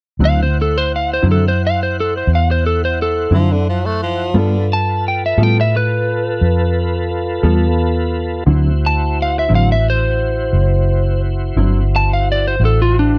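Swaggering and laid-back, this slow 12/8 blues in D mixolydian at 58 BPM moves from D9 to G9 and back, with a round, punchy foam-muted bass up front, a mellow, dark electric guitar shimmering with harmonic tremolo, a smooth tonewheel organ holding chords through chorus vibrato and slow rotary speaker, a slightly broken-up picked lead guitar carrying the melody, and a raspy, growling tenor saxophone adding a brief second line from 3.3 to 4.7 seconds, all captured in a dry, close 1970s-style studio sound.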